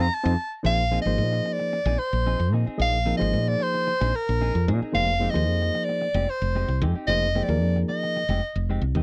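A breathy soprano saxophone carries the melody up front in this intense, driving jazz passage, its clear tone shaped by light vibrato and scooped notes. Beneath it a round, dark fretless bass sits direct and forward, a reedy electric piano with light overdrive supplies the harmony over Bb9sus4 and Fm9 chords, and a compressed, clean guitar adds picked stabs bathed in lush chorus. After a band accent in the first 0.7 seconds, the dry, close 1970s-style studio sound keeps the group intimate.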